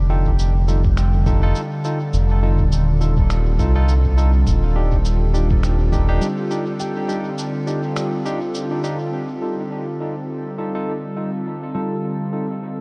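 Hazy and peaceful, this swung ambient dub excerpt floats a warbling tape-like pad's sustained chords, treated with chorus and phaser, over an up-front round analog bass and a muffled, thumpy kick with pitched-down shaker and finger snaps soaked in dub echo, while a barky tine electric piano stabs, a ringing stainless-steel handpan arpeggiates in the background and a very quiet glassy harmonics texture drifts in at 1.2 seconds, the bass and kick dropping out near 6 seconds for a break before the closing section at 9.1 seconds.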